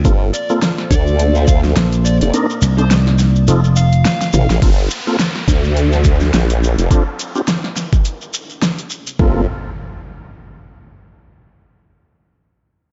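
Gritty and swaggering, this glitch hop excerpt at 105 BPM in G minor swings on a drop through Gm11, Cm9 and F7 with an overdriven, knocking electronic kick and a fat-snared pop kit, a sawtooth formant-sweep wobble bass, a growly slap bass until 4.0 s, grainy shekere, a moody background analog pad, dark picked lead guitar with dub echo, and smooth tonewheel organ stabs with key click. The kick drops out at 2.3 s, and a drum fill leads into a downlifter and impact at 4.6 s, where the organ stabs get a filter sweep.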